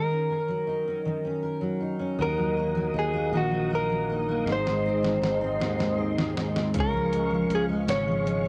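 This short excerpt of a dramatic, aching pop ballad in six-eight opens with a clean, picked electric guitar carrying the melody up front over a full-bodied, fingerpicked steel-string acoustic guitar, double-tracked and jumbo in tone, at a slow 53 BPM. At 2.2 seconds a tonewheel organ enters with sustained chords, clear and set further back, colored by chorus vibrato and a slow rotary speaker. A growly, punchy fretless electric bass arrives at the same moment, its sustaining low notes thickened by transformer saturation. At 4.5 seconds a gritty, compressed sampler-style drum kit joins with a thumpy kick, a medium-tuned snare and hi-hat, beginning with a fill, its sound re-recorded in a large room. The harmony moves from a dark minor seventh chord through minor to brighter major chords, and the whole home cassette recording sits in a modest booth ambience with a dusty, tape-softened character.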